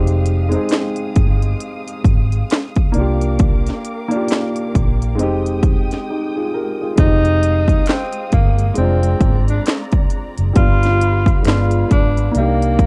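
A lazy, swung sixteenth-note groove in four sets the pace, carried by an electronic drum kit with a heavy kick, cracking snare, smooth hi-hats and handclaps, all roughened by overdrive and gritty 12-bit sampler character and sitting up front. A round, foam-muted electric bass with a punchy, amped tone holds the low end beside it, while a woody, mellow upright piano plays the accompaniment and a lush bowed string section sustains shadowy chords, both softened by a low-pass filter and plate reverb. The hazy, nostalgic mood deepens through minor-seventh and ninth harmonies, moving toward altered dominant colours near the close of this short passage. After a brief break at 6.1 seconds, a breathy tenor saxophone takes the lead at 7.0 seconds, playing a jazz-style solo with subtone, vibrato and scooped notes, its sound blurred by tape echo and reverb. A very quiet, distant finger snap joins at 7.9 seconds, adding a human touch from a large room under the mix.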